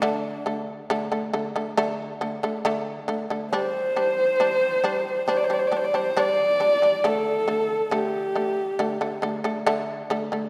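Windswept and solemn, this traditional excerpt moves at a slow 68 BPM in 4/4 from D5 to G5 and back to D5, as a dark, husky horsehead fiddle sings the melody with light vibrato and portamento until 9.2 seconds, while a buzzing, percussive plectrum-plucked shamisen plays arpeggios and rings on alone to 10.5 seconds, inside a wet scoring-stage reverb.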